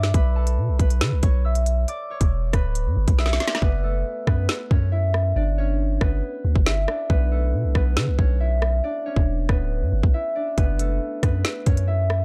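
This cold, menacing drill excerpt opens with all three parts at once: a fingerpicked concert harp carrying the melody through a low-pass filter, a deep sine-toned 808-style bass, and an electronic drill kit, all moving in a half-time feel. The harp sits further back in the mix, its ringing acoustic tone softened by the filter, while the bass and drums stay up front. The bass has a fast attack, long decaying notes and a mellow body. The kit pairs a hard-clipped kick and woody snare with crisp hi-hats and rim clicks. A drum fill at 3.2 seconds leads into the second section, where the hi-hats drop out from 3.6 to 10.6 seconds, with a brief break from 10.1 to 10.6 seconds near the end of that stretch. The dry, dark production carries the harmony through Bm7, Em7, F#m7 and G.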